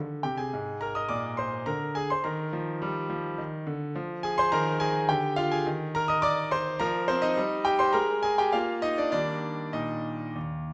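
Classical-period piano sonatina in E-flat major, this short excerpt moves at 105 BPM in 3/4 with an elegant, playful character and a flexible, rubato feel. A single concert grand piano carries the whole piece, playing solo from 0.0 to 10.7 s across a range from Eb2 to Eb6. Its tone is bright and polished, with a deep bass and a present, up-front placement. The harmony opens on a rootless F minor before settling onto E-flat, passes through colourful chords such as D minor add 11 and A-flat sus2, and closes back on E-flat at 9.1 s. A wet recital hall reverb surrounds the instrument, giving the passage a graceful sense of space as it is cut from a longer piece.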